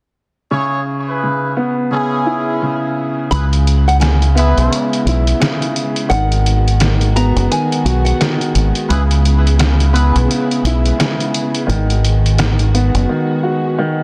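This dark, tough boom-bap hip-hop passage, cut from a longer piece, opens at 0.5 seconds with a woody upright piano, intimate and up front with its action noise audible, alongside short, punchy stabs from a cup-muted trumpet section that sounds veiled, with light vibrato and tape echo. At 3.3 seconds the groove arrives in a swung 4/4: a round, deep fingered electric bass sits prominently at the front, and a muffled, pitched-down sampler-style kit of hi-hat, rim click and snare carries overdrive and gritty 12-bit character. At the same moment a small, fingerpicked nylon-string guitar adds a brief high melody with tape echo, while a bowed string section played sul tasto holds smooth, soft-attack chords in the background. The harmony moves between C#m7 and G#m7 beneath light studio reverb, in a dense, heavily limited modern master. At 13.1 seconds the drums drop out for a short break, leaving the piano and strings to carry the close.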